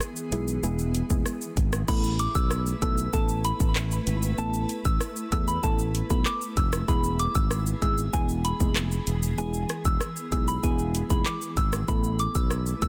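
An overdriven afro-pop drum kit sits up front in this hypnotic, tough dancehall excerpt at 96 BPM in a straight 4/4, its electronic, produced sound built from a deep kick, metallic hi-hats, handclaps, rim clicks, shaker and crash cymbal. A sustaining fretless electric bass enters at 0.3 seconds, growly and punchy, sitting forward in the mix with a direct, amped tone. Underneath, a soft round pluck with a dark, decaying filter character and chorus plays the accompaniment, while a cloudy granular pad holds blurred, evolving sustained chords, pumping against the beat through sidechain and bathed in its own reverb. At 1.9 seconds a soft synth bell takes up the melody high in the register, pure and mellow, treated with chorus, phaser and delay. The harmony moves between E and Asus2, the room is dry, and the master is dense, heavily limited and modern.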